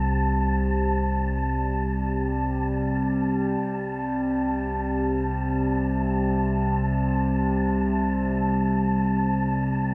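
Ambient in free time and tuned slightly sharp, this luminous, warm excerpt from a longer piece sets a round, deep sine sub bass on C2, which fades out across its 9.9 seconds, beneath an up-front, warbling analog drone of sawtooth and pulse waves with pulse-width modulation and chorus moving between C3 and G3, while a breathy, wind-like tuned noise texture on A5 carries its own built-in reverb, all held in a vast, echoing cathedral space with a long 7.0-second decay and the soft patina of cassette tape.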